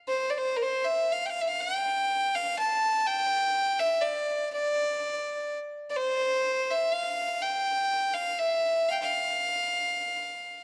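A clear, earthy solo fiddle sits close and up front in a moderate concert-hall reverb, one bowed player heard on its own from 0.1 to 10.6 seconds in this fragment cut from a longer piece. The Celtic folk air moves freely in a rubato 6/8 around a slow pulse of 41 dotted-quarter beats per minute, its line ranging between Bb4 and A5. The mood is longing and haunting.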